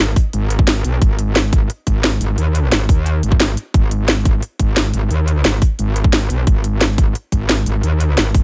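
A straight 4/4 pulse at 176 BPM drives this short excerpt of dark, technical drum and bass in G# minor, its mood aggressive and futuristic. A tight electronic kick drum sits up front and slightly louder than the other parts, arriving at 0.2 seconds alongside a layered drum and bass kit with a cracking snare and crisp hats, both carrying a tape-warm finish. The metallic wobble bass opens the recording at 0.0 seconds, holding the low register between G#1 and D#2 with a fast attack and sustained, compressed tone. Its FM and sine character is roughened by distortion and overdrive, thickened by chorus, and shaped by sidechain pumping that gives it a restless, breathing push. The whole passage sits in a digital ambience, forming a single unbroken section through to 8.4 seconds.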